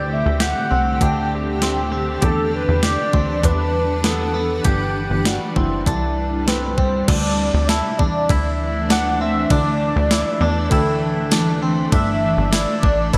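Bright, 1980s-style digital production sets this dream pop excerpt inside a moderate plate reverb with a digital ambience, giving it a dreamy, ethereal air at 99 BPM in a straight 4/4 feel in D mixolydian. A velvety synth lead carries the melody with chorus, shimmer reverb and delay, floating over a granular cloud pad whose blurred, evolving chords add a full-bodied haze. A direct-recorded clean electric guitar plays twangy, compressed arpeggios soaked in lush chorus, shimmer reverb and delay, while a punchy, funky analog bass gives plucky sawtooth and square-wave notes with a fast, decaying attack. A clean 12-bit drum machine enters at 0.4 seconds, sitting up front with a thumpy kick, medium-tuned snare, hi-hat, ride, crash and tambourine under gated reverb, and a delicate, bell-like celesta sparkles very quietly in the background until 11.4 seconds. The chords move from D7sus4 through Em7, Gmaj7 and C before the second section opens on Dsus2 at 7.1 seconds and settles toward Gsus2.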